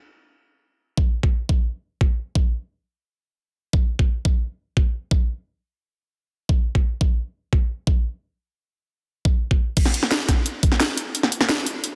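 A straight 4/4 drum and bass pulse at 174 BPM drives this aggressive, mechanical fragment of a longer piece, where an overdriven, knocking electronic kick sits up front from 1.0 seconds to 10.7 seconds, carrying on past a drop at 9.8 seconds that brings in an overdriven drum kit with a cracking snare, bright hi-hats and crash cymbal, all under light reverb in a dense, heavily limited modern master.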